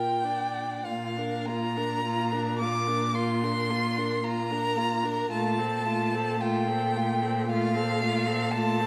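Tender and serene, this short passage, cut from a longer piece, is a slow romantic movement for string quartet, played with a flexible rubato in four. The first violin carries the melody high in its range, sitting close and up front with a warm, expressive tone, soft attacks, vibrato and gentle portamento slides. The second violin sings a supporting line beneath it in the same soft, vibrato-rich manner, while the viola fills in the accompaniment with a rich, focused sound and a smooth top. The cello holds a single low bass note throughout, its bowed tone full and focused yet distant. All four players sound together from the start to 8.9 seconds, the harmony shifting from Bb to F/Bb at 5.3 seconds, and a lingering recital-hall reverberation surrounds the ensemble with the glow of a church or concert hall.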